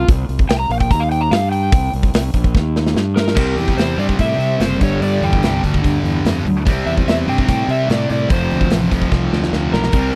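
Driving and gritty, this blues rock and southern rock power trio cut moves at 146 BPM, opening with an overdriven slide guitar solo carrying a bright, tape-echoed melody over a round, punchy fuzz bass played with the fingers and a big rock drum kit with a boomy kick and medium-tuned snare. A drum fill closes the opening at 2.5 seconds, and at 3.3 seconds a thick, double-tracked fuzz guitar riff enters up front, pushing the piece through chord changes among C5, C, G5 and F5 before another fill at 9.1 seconds. The sound is dry and close, in a 1970s studio style, and the clip is cut from a longer piece.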